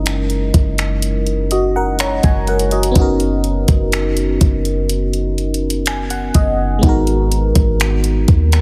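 A glassy FM electric piano with a bell-like attack provides the accompaniment in this moody, longing slice of contemporary R&B, its tone shimmering through chorus and phaser and carrying a faint noise layer beneath each note. It sits up front, spanning G#3 to A#5 and moving from F#13 to Bmaj7/F# and then G#m7, with a short fill between 5.4 and 6.8 seconds. Underneath, a clean 808-style bass, deep and boomy with a dark, sine-like tone and fast, decaying notes, holds the low end between F#1 and D#2. A smooth, electronic drum kit enters at 0.1 seconds with a knocking kick, warm hats and finger snaps, its sound re-recorded in a small room and placed close to the listener. At a slow 62 BPM in straight 4/4, the short clip has a dry, heavily compressed radio sound.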